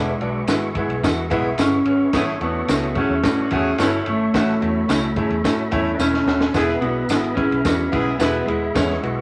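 A wet studio reverb with a faint mains hum surrounds this uptempo, danceable 1960s-style soul excerpt in E mixolydian at 109 BPM, where a dark, fingered electric guitar carries the melody over open, deep-bassed concert grand piano, a second clean guitar riff, flute-like tonewheel organ chords turning through a slow rotary speaker in the background, a round, foam-muted vintage bass, a gritty, punchy breakbeat kit with a fill at 6.0 seconds, a jingly tambourine, and a tight, vibrato-laden saxophone section adding an uplifting second line from 2.1 seconds as the harmony moves from E to A and back to E at 6.6 seconds.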